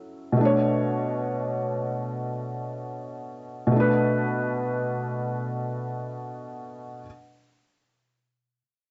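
The recording sounds dark and warm, its top end rolled off, with a moderate studio reverb that gives a short, close sense of space. This brief hip hop fragment is cut from a longer piece and carries a melancholic, reflective mood. A felt-muted upright piano plays alone from 0.0 to 7.1 s, set up front with a soft, mellow, intimate tone and a cassette tape colour. Its action noise is clearly audible, adding a tactile character to the accompaniment. The harmony rests on a minor ninth chord at 0.4 s before settling onto a minor seventh at 3.7 s.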